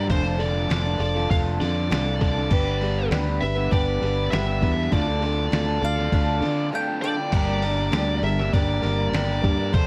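Lightly reverberant and dusted with vinyl crackle, this wistful, reflective folk rock and heartland rock excerpt moves in a straight 4/4 feel. A distorted, bluesy overdriven lead guitar carries the melody between C5 and F5, while a raw, double-tracked garage guitar drives an overdriven riff beneath it. A boxy picked acoustic archtop guitar with fresh strings fills in the accompaniment, and a direct, up-front fingered electric bass anchors the low end. The lo-fi sampler-style drum kit sounds compressed, pitched down and muffled, with a thumpy kick, a medium-tuned snare, hi-hat and crash cymbal. A bright, round mandolin adds a brief second line from 5.8 to 7.3 seconds, spanning a short break before the harmony shifts from Dm/F, G and Dm to Gm at 7.3 seconds.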